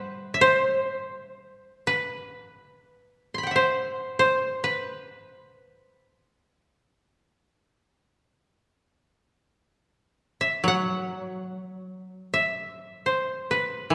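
Still and austere, this short excerpt of Japanese chamber music unfolds in free time in E hirajoshi, with an up-front, woody koto played with fingerpicks carrying the melody throughout while a second, softer koto adds low accompaniment only in the first 1.7 seconds and again from 10.6 seconds, all set in the moderate reverb of a concert hall.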